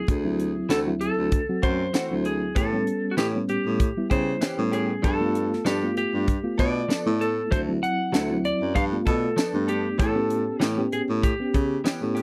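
A gritty, laid-back soul blues groove rides a straight-eighth feel with a light swing on the sixteenths in this short 12-second cut from a longer piece. A clean lap steel guitar, played with fingerpicks and a scooped slide tone, carries the melody up front from the start, while a mellow, reedy electric piano with tremolo fills in the accompaniment through its built-in speakers. Down low, a baritone saxophone takes the bass role with a warm subtone and jazz-style vibrato, sitting up front beside a tight funk drum kit of high-tuned snare, tight kick, hi-hat and tambourine. A direct-recorded electric guitar joins at 0.7 seconds with compressed, picked stabs softened by ensemble chorus. The chords cycle through D9, A9 and G9, and the whole take has the dry, close sound of a 1970s studio with little reverb.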